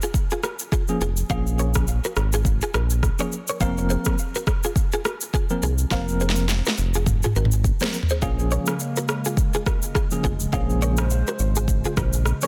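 In this sultry, mellow afrobeats excerpt, a round, dark analog bass sits up front alongside a produced drum kit with a deep kick, a sharp soft-clipped snare and a fill from 5.9 s, a tine electric piano with medium tremolo through a combo amp, a bright, direct-recorded clean guitar riff with ensemble chorus and digital delay, and a hollow, flute-like pad that enters at 8.6 s, all set in light reverb under a dense, heavily limited modern master.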